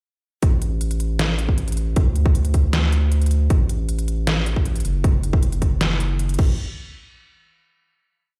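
Playful and euphoric, this short future bass piece at 156 BPM in a half-time 4/4 feel drops straight in at 0.4 seconds with a hard-clipped electronic kick up front, a layered dubstep kit of deep snare, crisp closed hats with rolls and crash, and a thick, saturated sine sub bass holding sustained roots from F#1 to D2 with sidechain pumping. The drums stop at 6.5 seconds and the bass at 6.6 seconds, leading into a final hit that runs to 8.1 seconds. The sound feels like a big system in a bare room, with the kick and bass pressed forward.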